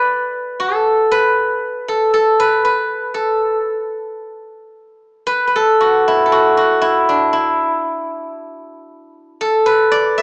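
The rhythm flows freely in rubato around 59 BPM, loosely framed in 2/4, giving this short Chinese traditional solo a pastoral, elegant calm. A single acoustic steel-string zither carries the whole piece in the A zhi mode, played with fingerpicks and staying between D4 and E5. Its tone is silvery and ringing, and it sits up front in the sound. The music falls into two short sections, the first running to 5.3 seconds and the second continuing from there to 10.2 seconds, where this fragment of a longer piece is cut off. A moderate reverb from a large studio adds a gentle halo, while the live-in-the-room recording has a small-speaker character.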